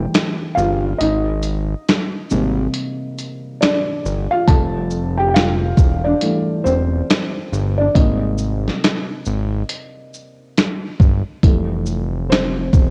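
A 69 BPM groove in 4/4 swings its sixteenths, setting a nostalgic, cosy lo-fi hip hop mood in F major for this cut from a longer piece. The dusty soul sampler-style drum kit plays finger snaps, hi-hat, shaker, kick drum and snare drum. It is compressed and gritty, with a thumpy kick, a fat snare and a tape-warm tone, re-recorded in a large room and placed up front. A fat analog bass, thick and detuned with a sawtooth edge, a fast attack, sustained notes and a filter sweep, sits low beneath the harmony. The felt-muted upright piano carries a solo across the whole passage, its soft, mellow, dark tone shaped by thick felt and short sustain, with cassette colouring lending it a vintage intimacy. The chords move between Fmaj7 and Abmaj7, a break runs from the start to 4.5 seconds, and the home cassette recording is framed by light reverb and digital ambience.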